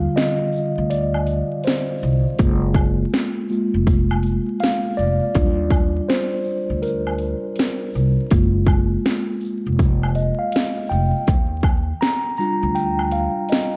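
A dark, warm mix with light reverb, digital ambience and vinyl crackle gives this short lo-fi hip hop clip, cut from a longer piece, a nostalgic, mellow glow. A clean, direct tine electric piano sits up front with a cassette-tape tint, carrying a solo across the whole passage as it moves between Ebmaj9 and Gbmaj9 chords. Beneath it, a woody, growly upright bass with steel strings is plucked pizzicato, its bright tone also placed close, and it stops at 13.3 seconds. An overdriven, layered electronic house kit enters at 0.2 seconds, with a punchy kick, cracking snare, hi-hat and shaker, re-recorded in a large room yet kept forward in the mix. Soft in the background, a band-limited, vintage-sounding egg shaker, woodblock and group handclap add acoustic texture, all riding a relaxed sixteenth-note swing.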